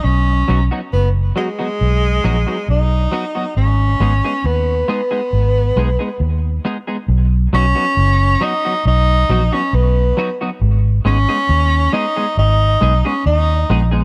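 Laid-back and sunny, this roots reggae excerpt in B major moves at a relaxed 68 BPM, as a roomy tenor saxophone sings the melody with vibrato and tape echo over a dark, round, foam-muted electric bass that sits punchy and up front, while a clean semi-hollow electric guitar enters at 0.5 s with subtle chorus and tape echo, all cycling between B and G#m under light reverb.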